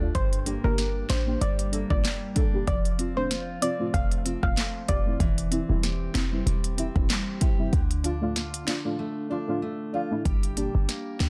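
A deep, dark chord stab with chorus and phaser, fingerpicked jumbo acoustic guitar arpeggios and a short, punchy 808-style bass open this sultry, tough dancehall excerpt at 95 BPM in G dorian with a 16th-note swing, joined at 0.1 seconds by a soft, round pluck melody with tape echo that plays until 5.0 seconds and by an up-front, tape-warm afro-pop kit of deep kick, sharp snare, smooth hats and handclaps that drops out from 9.0 to 10.3 seconds, all over a Gm, F, C/E, Dm progression in a dry, dense, heavily limited modern mix.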